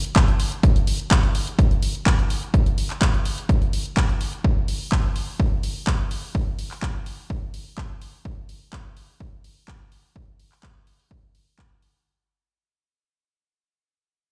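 A straight house groove at 126 BPM drives this funky, joyful fragment, built around a punchy, up-front electronic kick that runs from 0.2 to 11.7 seconds. A layered house drum kit of handclaps and hi-hats, the hats pumping under sidechain, sits lower in the mix with a tape-warm tone and studio reverb. The whole passage fades out across its length, and the sound carries the ambience of a big system playing in a bare, stone-walled room.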